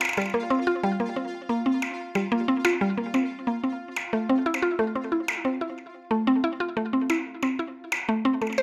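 A straight 4/4 pulse at 91 BPM comes from electronic percussion blips, re-recorded in a large room and placed up front, in this glitchy, wistful IDM excerpt cut from a longer piece. Entering at 0.2 seconds, a woody, round, mallet-like FM synth pluck plays arpeggios between G3 and C5 with a noise layer, chorus, phaser and digital delay, and a filter sweep runs across it throughout. Beneath it sits a quieter pulsing, tempo-synced gated texture of detuned triangle unison with chorus and its own reverb, over chords moving from C7sus4 to Fmaj7 at 4.1 seconds, all in a small-room, rough home demo mix.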